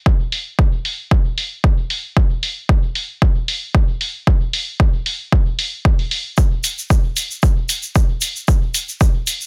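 A punchy, layered electronic kick drives this hazy, hypnotic techno excerpt with a lightly swung 4/4 feel, joined almost at once by dark, low-pass-filtered electronic hi-hats set up front, while a grainy, bright egg shaker enters at 6.4 seconds within a digital ambience and a dense, heavily limited modern master.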